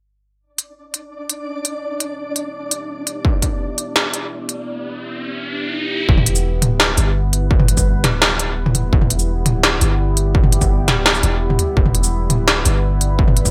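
A half-time drum and bass groove at 169 BPM in E minor drives this cinematic, heavy excerpt, as an up-front industrial kit with a clanging snare, crisp hats, shaker and toms enters at 0.6 seconds under gated reverb, joined by a flickering, grainy granular texture and then a deep, moody detuned pad of sustained chords, chorused and pumping against the sidechain. After a break at 4.7 seconds where an electronic riser sounds, the drop lands at 6.1 seconds with the distorted, tape-warm kick and a long, sine-toned 808-style bass warmed by tube saturation. The production carries a bright 1980s-style digital sheen with light reverb.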